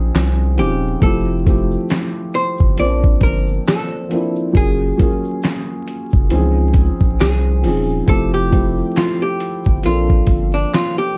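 A felt-muted upright piano with audible action noise and cassette tape colour and a saturated sub bass open this cosy, nostalgic lo-fi hip hop excerpt at 68 BPM in F major, joined at 0.1 seconds by a gritty, thumpy sampler-style drum kit with fat snare, handclaps and hi-hat, then at 0.6 seconds by a dark, hollow-body archtop guitar carrying the melody through a low-pass filter, while a grainy egg shaker sits in the background and vinyl crackle and light reverb wrap the swung groove over lush major ninth chords.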